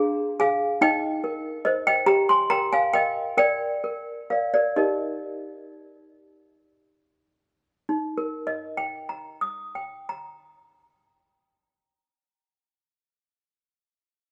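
A solo toy piano, bell-like and slightly out of tune with a clanky touch of wooden hammers, opens this innocent, tender classical lullaby in Eb major, sitting up front in a light reverb. In a rubato 6/8 at roughly 36-48 BPM, it ranges from Eb4 to Eb6 and slows from 0.8 to 7.9 seconds before a contrasting passage runs until 11.1 seconds. This short fragment is cut from a longer piece.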